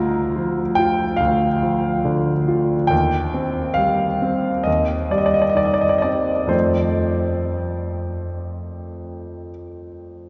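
This is a romantic classical nocturne for solo piano, cut from a longer piece, with a serene, tender mood. It moves slowly at 58-72 BPM in 4/4, with a flexible rubato feel in Bb major. A warm concert grand carries everything alone from 0.0 to 10.3 seconds, reaching from a deep bass D2 up to Bb5, and it sounds natural and intimate, close enough that the noise of its action can be heard. The harmony rests on Bb/D, shifts to Cm/Eb at 2.9 seconds and arrives on F at 6.5 seconds. A lush cathedral reverb with a 5.1-second decay surrounds the playing, so the instrument seems heard from further back in a vast, resonant space.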